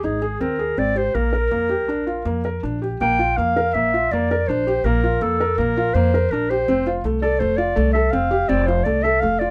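Contemporary instrumental chamber music in 5/4, hopeful and shimmering, cut from a longer piece, with a mellow, classical-style clarinet carrying the melody up front throughout. Beneath it, a felt-muted upright piano plays soft, intimate arpeggios with a boxy tone and audible action noise, while a pizzicato upright bass adds a woody, thumpy low end. Light reverb surrounds the trio, and the music moves into a new section at 3.0 seconds.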